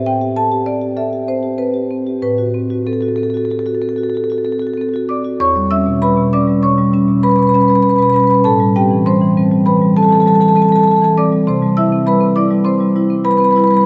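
A long, cathedral-like reverb surrounds this short cut from a contemporary classical piece for solo marimba, played with medium mallets and heard warm and up front across a range from E2 to E6. The mood is hypnotic and reflective, moving in a rubato 5/4 around 99 BPM through chords of Am9, Am6, Em6, Am7 and Cmaj7, with a new section beginning at 5.4 seconds and running to the close at 13.9 seconds.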